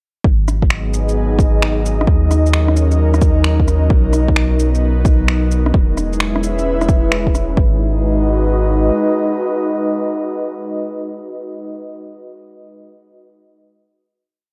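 Wistful and rainy, this short future garage piece moves at 131 BPM in G# minor with a swung 16th feel, cycling through G#m7, D#m7, Bmaj7 and E6 before settling on a final G#m7 chord. A deep, overdriven, muffled two-step kick and a skittering shuffle of rim clicks, shakers and finger snaps sit over a round, mellow sine sub bass with a sidechain pump, while an airy, breathy pad of detuned sawtooth and triangle tones, a noise layer and chorus drifts through slowly shifting chords. The drums stop by 7.7 seconds, and the pad lingers to 11.8 seconds, all framed by light reverb and a cassette-tape character.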